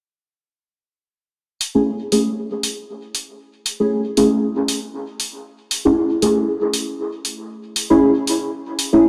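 A deep, mellow chord stab leads this meditative dub techno fragment, its dark, wave-folded tone given a fast attack and short decay, then shaded with chorus, phaser and dub echo as it repeats a rootless F#m9 from 1.7 seconds. An overdriven, layered electronic hi-hat sits up front from 1.6 seconds, riding the track's gently swung feel with a small-room grit. A lush digital hall reverb soaks the mix in a dreamy haze, and the cut comes from a longer piece.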